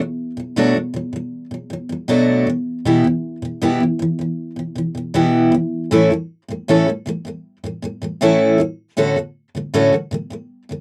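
This is a wistful, reflective pop piece at 78 BPM in 4/4 with a straight feel, heard as a short cut from a longer work. A single picked steel-string acoustic guitar plays alone for the full 10.8 seconds, spanning A2 to A4. Its jumbo tone is bright and full-bodied, and it sits up front in the sound. The chords move from Bm7 to Em/B at 2.5 seconds, then to A at 5.9 seconds and Dmaj7/A at 9.0 seconds. The recording is dry and close, in a 1970s studio style, with a moderate booth ambience around the guitar.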